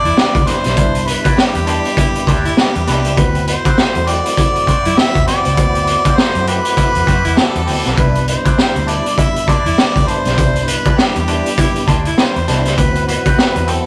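This driving, funky piece at 100 BPM opens with a harmonica carrying the pop-style melody with a smooth top, over a whispered, breathy baritone saxophone line with light vibrato and scooped notes. Beneath them sit a bright, clean semi-hollow guitar through a wah, a dark, round foam-muted bass, and a soft, flute-like tonewheel organ holding sustained chords with audible key click. A gritty, saturated drum kit arrives up front at 0.1 s with a boomy kick, high-tuned snare and hi-hat, and a second organ, dark and spinning on a fast rotary speaker, adds stabs from 0.2 s. The harmony shifts between Cmaj9 and D13 over swung sixteenths, and the saxophone drops out at 12.3 s while the rest carry on. A moderate stone-room reverb and rough rehearsal-room character with saturation give the whole clip a raw, lived-in feel.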